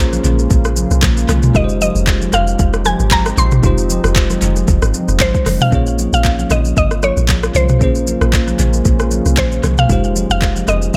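A woody, mallet-like synth pluck carries the melody over bell-like tine electric piano chords, a moody pad sitting deep in the background and a round, dark log drum bass, all opening this late-night, soulful amapiano excerpt, with the pluck and piano trailing analog delay. From 0.1 seconds a soft-kicked, overdriven R&B drum kit sits up front with crisp hats, handclaps, rim clicks, shaker and toms, while ringing hand-played congas add a swung lilt from further back. The harmony moves between Bbm9 and Fm9 in an echo-heavy mix with light reverb, and a second section begins at 5.7 seconds.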